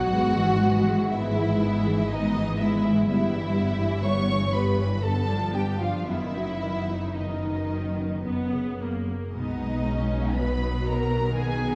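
Moving in a rubato 3/4 at about 54-62 BPM, this slow romantic movement for symphony orchestra unfolds in B major with a tender, warm mood. A dark, woody violin section carries the melody from a distance with light vibrato, while a second violin section sings a focused, smooth-topped line beneath it. Violas sit up front with a rich, even accompaniment, and a concert harp adds very quiet, mellow, ringing fingerpicked arpeggios. The low end comes from a lush cello section in the background and a close, bowed double bass section, both with vibrato. The harmony passes from E/G# through Em/G and G7 before settling via B/F# and F# onto B, and a wet scoring-stage reverb places the listener further back in the room.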